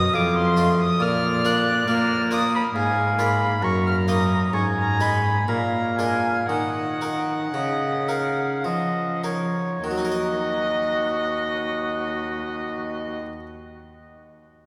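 Bathed in the long, wet reverb of a church or concert hall, this solemn, introspective baroque-style sonata movement in 3/4 sets a soft-edged oboe melody with light vibrato against a dark, gut-strung violin second line, a bright Italian harpsichord plucking the accompaniment and a rich period cello carrying the bass, all four playing together throughout as the pace slows from 2.3 to 9.8 seconds before the music moves into a new section that is cut off at 13.5 seconds.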